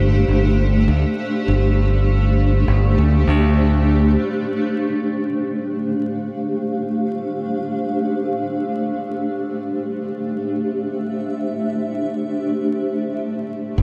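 Meditative and spacious, this free-time ambient dub fragment sets a blurred, detuned granular cloud pad up front, holding sustained chords that shift from Dm/G to Gsus2 at 4.2 seconds, where a filter sweep takes hold of the pad, while a bright, direct fingered electric bass sits beneath it until 4.2 seconds and returns at 13.8 seconds, in a dreamy mix soaked in lush hall reverb and flecked with vinyl crackle.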